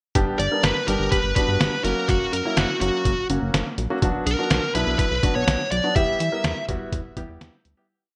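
A whole synth-pop piece opens at 0.2 s with a compressed, pitched-down sampler-style drum kit playing a straight drum-machine beat up front, its thumpy kick and snare washed in gated reverb. Alongside it come a glossy, dark sequenced synth bass with chorus, syncopated close-voiced chords on a warm concert grand piano, and a soft, round, detuned pluck tracing a falling eighth-note arpeggio in the background over G, F#, Bm and Em. From 0.4 s a smooth, overdriven picked electric lead guitar states call-phrase motifs up front, and the bright 1980s-style digital production with plate reverb gives a driving, cool feel before the piece fades out from 6.0 s.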